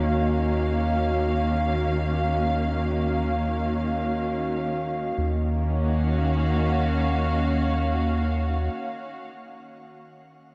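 Unfolding in free time, this brief ambient excerpt from a longer piece settles into Eb minor with a melancholic, reflective mood, opening on an Ebm9 chord. A muted studio string section carries sustained chords from Eb3 to F5 throughout, its con sordino tone veiled and dark, bowed with vibrato and sitting up front yet sounding distant under shimmer reverb. Beneath it, a round analog bass holds a deep Eb2, its square, sine, triangle, sawtooth and wave-folded colours blending into a sustained tone with a fast attack until about 8.7 seconds. A glassy, ethereal glass harmonica lingers in the background on F5 with a slow, smooth attack and a vintage, band-limited quality, also bathed in shimmer reverb, and it drops out of the texture at 5.2 seconds, where the music moves into a second section. The whole is steeped in a cathedral reverb with a long 5.3-second decay, giving the dark, warm production a vast, hushed space.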